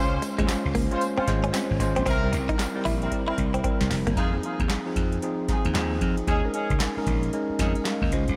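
A bell-like tine electric piano, punchy slap bass, a twangy clean guitar riff with subtle chorus and mellow, distant horn stabs with delay open this slick, confident new jack swing excerpt in F minor at 114 BPM. They are joined at 0.2 seconds by a booming, overdriven analog drum machine with deep kick, crisp snare, handclaps, metallic hats and tambourine that plays a fill from 3.1 seconds, with the guitar dropping out at 4.1 seconds. It is all set in a dreamy mix soaked in reverb over Dbmaj7, C7, Fm7 and Eb7sus4 chords.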